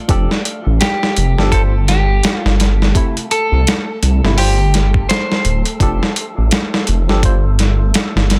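Trip hop with a cinematic, smoky mood and a swung groove: a gritty, overdriven sampler-style drum kit with a thumpy kick sits up front beside a deep, rumbling detuned saw bass, while a barky tine electric piano with medium tremolo and tape echo plays chords under a dark, picked clean electric guitar melody from 0.8 to 5.6 seconds, all over an airy, wind-like noise texture in the background.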